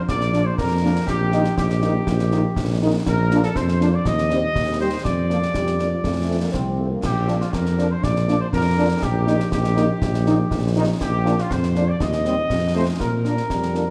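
A spirited, festive military-style march for wind band in Bb major at 121 BPM in a straight 2/4, where a distant, dark trumpet section carries the melody over a mellow, close-miked tuba bass that sits up front, with concert snare drum, bass drum and clash cymbals with shadowed cymbal tone, a very quiet French horn section in accompaniment, sustained chords from a trombone section with light vibrato in the background, and a warm euphonium second line entering only at 13.5 seconds, all set in a moderate concert hall reverb in this cut from a longer piece.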